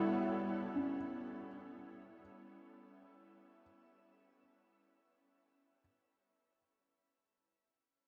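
Ambient in free time and tuned to A4 = 441 Hz, this peaceful, luminous fragment of a longer piece opens on an A7 chord from a bright, detuned, morphing wavetable pad with ensemble chorus that fades out over its first 2.2 seconds, while a boxy, felt-muted upright piano with audible action noise plays delayed arpeggios up front until 5.8 seconds, all bathed in a long shimmer reverb and the warbling pitch drift of worn cassette tape.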